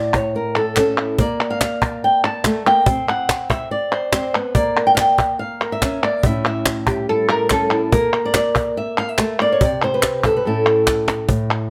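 In a lightly reverberant room, this dramatic, mournful flamenco excerpt at 143 BPM in A phrygian dominant puts a fingerpicked acoustic flamenco guitar melody, glowing with plate reverb, up front over a close, dry, woody cajon with faint snares and crisp palmas hand claps, while a deep, plectrum-plucked fretless oud with double strings adds a brief second line from 6.9 to 7.8 seconds, the harmony circling A, Bb and C(b5, no3) before a drum fill at 11.1 seconds.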